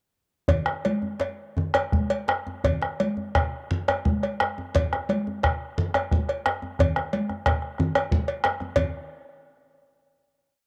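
Captured on a home cassette with light reverb and a small-room ambience, this complete West African traditional drum ensemble piece in 12/8 feels driving and earthy, with a metallic, close cowbell bell pattern and a round, compressed, saturated bombo up front, while a deep djembe played with soft hands and thick-skinned, medium-tuned, vintage, band-limited congas fill in evenly spread patterns, all four entering at 0.5 s and speeding up until a final hit at 8.8 s.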